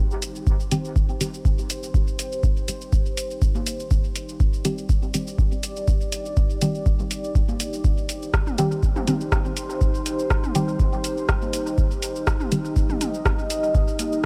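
A steady 4/4 pulse at 122 BPM drives this meditative, nocturnal dub techno fragment in C minor, with a light 54% swing on the sixteenths. An up-front, tape-warm electronic kick anchors the groove, while an analog drum machine adds metallic hi-hats, rim clicks and shaker trailed by dub echo. A deep, mellow chord stab on C minor enters at 0.7 s, its soft, nasal pluck coloured by chorus, phaser, dub echo and sidechain pumping as a filter sweep shapes it throughout. Above it, a detuned sawtooth pad with a sub octave holds sustained chords, its slow attack and long release bathed in chorus, built-in reverb and pumping. Layered, overdriven electronic congas and toms sit in the background, with a single hit at 3.6 s before returning from 7.5 s, and the overall room stays fairly dry.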